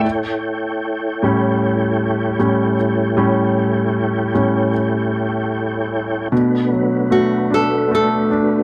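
Melancholic and emotional, this short cut from a longer pop ballad moves at an unhurried 76 BPM in a straight 4/4. A clear concert grand piano carries the accompaniment and takes the featured role through the opening 6.3 seconds, its intimate, polished tone showing deep bass, long sustain and audible action noise up close. Alongside it, a mellow tonewheel organ holds soft, flute-like sustained chords, given a shimmering character by chorus vibrato and a fast rotary speaker. The harmony sits on A7 before shifting to Bm7 at 6.3 seconds, opening a new section. At 7.1 seconds a bright, fingerpicked nylon-string guitar enters with a short classical-style melody, finger squeaks audible and a slapback echo trailing its notes. The sound is dry and close, in the manner of a 1970s studio, with only light reverb around the parts.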